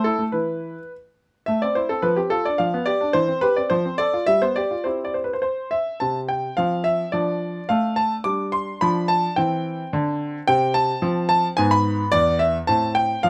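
A clear, up-front grand piano with a slightly worn, natural tone sits in light reverb, carrying this short 13.3-second cut from a longer classical-period sonatina. The music moves at 107 BPM in a straight 2/4, centred on C major, with a restless, dramatic mood. The solo piano covers a span from E2 to D6, and its opening phrase passes through A minor, D minor and G7 harmonies before settling on C at 4.9 seconds. A new section begins at 6.0 seconds, built on bare fifths and shadowed by a half-diminished chord over F. Near the close the harmony turns to E over G sharp and comes to rest on A minor at 12.7 seconds, leaving the passage on an unsettled, minor-key note.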